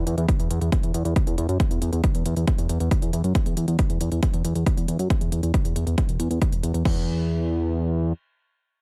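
This soaring, uplifting trance fragment opens at 0.0 seconds on a fat analog bass, a thick sawtooth tone with detuned, wave-folded edges, a fast attack and long sustain, set up front and pumping under sidechain compression while a filter sweep moves through it. A layered techno kit enters at 0.1 seconds with crash cymbal and smooth hi-hats, sitting much lower in level, and an electronic kick drum joins at 0.3 seconds, heavy, overdriven and placed forward in the mix. The drums carry grit from their overdrive along with a small-room reverb, while the overall sound stays fairly dry, all moving in a straight 4/4 pulse. At 6.9 seconds the drums fall away and the bass carries on by itself into a brief new section.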